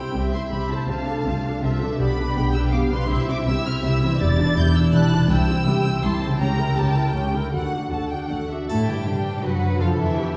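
A lush, expressive violin section carries the melody in this cheerful, lively, fast romantic orchestral movement at 162 BPM in 3/4 and C major, joined at 0.2 s by a smooth second violin line, with a viola section adding portamento accompaniment, a ringing thumb-plucked harp in arpeggios, and a bass of warm background cellos and distant double basses, until mellow French horns hold sustained chords and a background triangle sounds at 8.7 s, the whole heard from further back in a reverberant concert hall with vinyl crackle.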